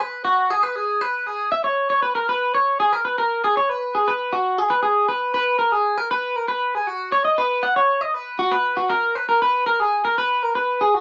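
An up-front, twangy electric guitar played through a small old amp carries this intricate, wistful rock excerpt alone at 118 BPM in a straight 4/4, its bright, slightly broken-up picked lines ranging from F#4 to F#5 under a lush chorus, with a moderate small-room reverb around it and a shift to a new section at 5.3 seconds.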